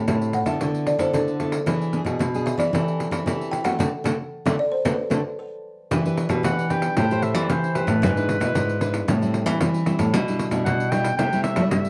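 A straight 4/4 samba-and-choro groove opens this joyful cut from a longer piece, driven by a jingly pandeiro played with hard hands and placed up front, its vintage, band-limited sound adding a sunny old-record flavor. Two fingerpicked nylon-string guitars fill out the harmony, one carrying full-bodied accompaniment chords up front and the other holding down a deep, classical-toned bass line. A buzzing kalimba takes the first melody, its short, woody, thumbnail-plucked notes carrying a hollow-box rattle until the band hits an accent that ends the opening section at 5.9 seconds. From there the piece moves into a minor-key passage where a clear, classical-style clarinet enters at 6.5 seconds and plays a solo line over the guitars and pandeiro. The chords wander through suspended and extended colors such as D9sus4 and a rootless Cmaj13/D before settling into Em7, Am7 and E7/G# movement, all captured with close, detailed microphones and a light touch of reverb.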